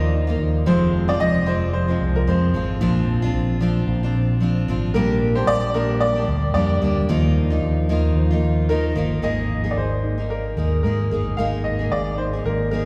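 An easy-going, carefree acoustic pop passage cut from a longer piece, moving at 112 BPM in 4/4 with a light 16th-note swing. A bright upright piano carries the melody up front, its woody, slightly detuned and worn tone giving the tune a homely sparkle. A picked steel-string acoustic guitar with a full-bodied dreadnought sound supplies the accompaniment close by, while a thumb-plucked nylon-string guitar adds classical arpeggios further back. A round, dark, amped fingered electric bass sits prominently underneath. The harmony drifts through Fm, Bbadd9 and Gm/Bb before settling on Ebsus2, then shifts to Absus2 as a new section opens at 9.2 seconds, and the whole group is bathed in the long, wet reverb of a church.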